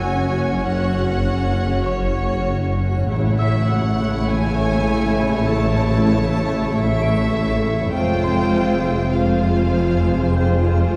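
The dark, woody cello section and the rich, smooth double basses anchor this mysterious, tense suspense film cue, moving at 99 BPM in a straight 4/4 and tuned slightly low to A4 = 438 Hz. Above them, two clear, intense violin lines sing with vibrato from a distance, the melody reaching between C5 and A5 and a second line beneath it, while a focused viola section fills in the background. A reversed, swelling texture with its own reverb holds dreamy, detuned chords, and a very quiet swarming drone, warbling and granular, enters at 0.1 s. A worn, slightly out-of-tune celesta adds delicate, bell-like sparkle from a boxy small room in the background. The harmony moves from F#5 to A at 3.1 s and settles on F minor at 7.9 s, all within a dark, warm production on a moderate scoring stage, with vinyl crackle lending a vintage patina to this cut from a longer piece.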